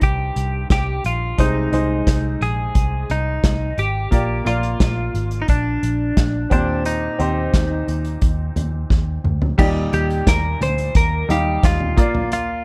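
A twelve-string electric guitar, twangy and clean, carries a hopeful melody over a woody, brilliant upright piano, a round, foam-muted vintage bass and an up-front acoustic kit played with bundle sticks in this piano-driven pop excerpt at 88 BPM in Eb major, where a drum fill at 8.9 seconds leads into a new section on an Ebmaj7 chord at 9.6 seconds, all set in a dark, light-reverb production.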